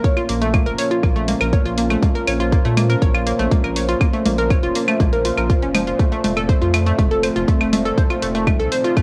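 Melodic techno at 121 BPM in Bb harmonic minor, melancholic and driving, built on a punchy, up-front electronic kick and a dry, overdriven hi-hat, claves and congas kit with studio reverb and cassette-tape colour, while a round analog bass enters at 0.3 s with sidechain pumping, a bright sawtooth analog pluck arpeggiates through chorus and tape echo, a moody detuned pad sustains Bbmadd9 moving to F at 6.0 s under vintage 12-bit sampler grit, and a very quiet, tense bowed-like drone with ring modulation and vibrato hums beneath this short cut from a longer piece with a lo-fi home cassette feel.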